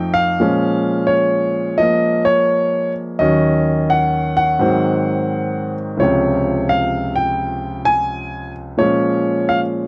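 A lilting swung 4/4 carries this relaxed, warm solo jazz passage, cut from a longer piece, where a clear concert grand piano plays alone, intimate and up front with deep bass, long sustain and audible action noise, moving through Bbm7, Ebm7 and Ab7 to settle on Dbmaj7 before returning to Bbm7 at 8.8 seconds, all captured in a dry, close 1970s-style studio sound.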